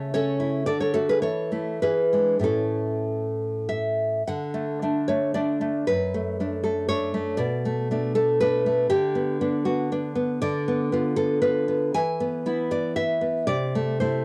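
In a rubato 3/4 that drifts between 94 and 123 BPM, this nostalgic romantic fragment from a longer piece for solo nylon-string guitar sits up front with a fingerpicked classical touch and cassette-tape coloring in a small home room, moving from A major through A/C#, D, E7 and back to A before turning to D major at 4.3 s and winding through Bm7, Bdim/D and E to land on Am/C, with the instrument ranging from F#2 to G#5 and tuned to A4 = 439 Hz.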